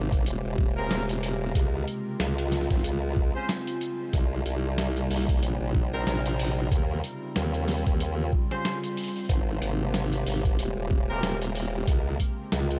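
Glitch hop at 93 BPM with a swung 16th feel, funky and gritty, where an up-front, thumpy, pitched-down electronic kick and a compressed, tape-warm boom bap kit with hi-hat and medium-tuned snare play alongside a saturated, chorused formant-sweep wobble bass, while a warbling, nostalgic lo-fi pad holds mellow sustained chords from Abmaj9 through Dbmaj7, Cm7 and Eb13 under punchy, tight horn stabs with light vibrato and tape echo entering at 0.8 seconds, all in a dark, lightly reverberant mix cut from a longer piece.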